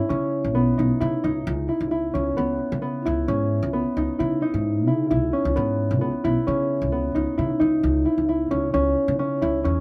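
Progressive instrumental fragment in 7/4 with an intricate, driving mood, where a thumb-plucked concert harp spins ringing arpeggios touched by slapback echo over a woody, dark pizzicato upright bass, both up front in a dry outdoor setting as the harmony moves from C#m7 to E/C# and returns to C#m7 at 8.7 seconds.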